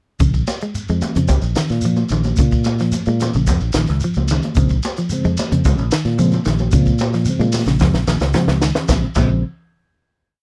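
A dry, close recording with a 1970s studio character and light reverb opens this short, complete afrobeat piece in Bb minor, running at 111 BPM in a straight 4/4 with an intense, funky mood. From 0.2 seconds a compact cocktail drum kit lays down an afro kit groove with a punchy kick, high-tuned snare and dark cymbals. Beneath it a fingered electric bass sits up front with a round, punchy tone, playing a syncopated riff, while a clean semi-hollow electric guitar repeats an arpeggiated ostinato over a Bbm7 chord. A grainy, distant shekere and ringing, high-tuned congas, which enter at 0.5 seconds with a vintage, band-limited colour, fill out the percussion. At 4.6 seconds a reedy electric piano joins in the background with a fast tremolo, adding syncopated rootless chord stabs, and a drum fill leads into a final chord that closes the groove.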